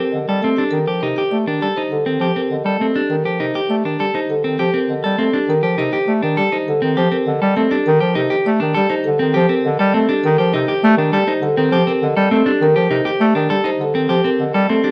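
Captured with close, detailed microphones in a moderate recital hall, this short excerpt of minimalist classical pattern music feels both urgent and meditative in a straight 4/4, as a woody rosewood marimba carries the melody over dark, picked arpeggios from an up-front clean electric guitar and a warm, vintage bass clarinet accompaniment, all resting on a single Cmadd9 chord.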